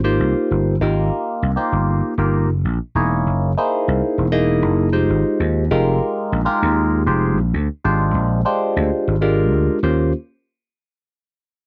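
Bright and slick, this jazz excerpt moves at 98 BPM in 4/4 with a light 16th-note swing, its harmony gliding from Abmaj13 through Gb13, Fm9 and Bb13 before arriving on Eb13 at 9.8 seconds. A barky, clean tine electric piano colored by phaser carries the chords up front, while a growly, punchy vintage slap bass with an amped edge sits just as close, both playing from the start until 10.1 seconds. The sound is dry and intimate, like a close 1970s studio recording with little reverb.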